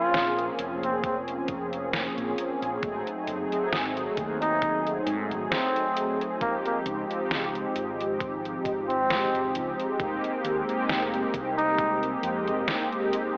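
Up front sits a mellow synth brass built from detuned sawtooth tones, brassy and round with chorus, vibrato, a filter sweep and analog delay, holding sustained chords across the whole 13.4-second excerpt from a longer piece. Over it a flugelhorn carries the solo melody in a smooth, pop-style voice, soft on top and trailed by tape echo, before falling silent at 12.1 seconds. This is hazy, nostalgic vaporwave in F minor at a slow 67 BPM in 4/4, with a light swing on the sixteenths and a harmony that drifts from Bbm9 through Ab7b9 and Dbmaj9#11 to Fm11. Beneath, a fretless electric bass stays dark and rounded, sitting low in the mix. A detuned 8-bit drum machine supplies overdriven hi-hat and snare, joined at 1.0 seconds by a thumpy, overdriven electronic kick. A plate reverb with a 2.8-second tail and a worn cassette, AM-radio colouring give the recording its faded, memory-like sheen.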